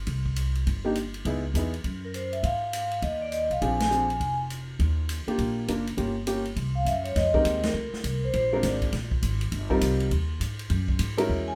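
A ringing, airy vibraphone with slow motor vibrato carries the melody in short phrases from 2.0 s and again at 6.8 s, riding over a sophisticated, swinging small-group jazz groove that is cut from a longer piece. A thumpy, dark pizzicato upright bass and a boxy upright piano with short sustain sit up front, while a natural-sounding drum kit with punchy kick, medium-tuned snare, hi-hat and ride cymbal drives the swing from a studio room. The band hits a shared accent at 3.8 s, and light reverb surrounds the whole.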